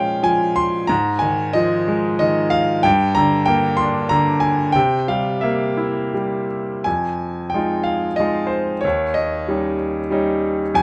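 Classical solo piano in F minor, moody and brooding, unfolds in a rubato 3/4 at roughly 83-96 BPM, its bright grand piano sitting up front and intimate, with audible action noise and long sustain. Ranging from Eb2 to C6, it moves through Bbm7, Gm and C7 before a new section arrives at 6.9 s on Fm7 and Eb7, set in a moderate studio reverb with a faint mains hum and cut from a longer piece.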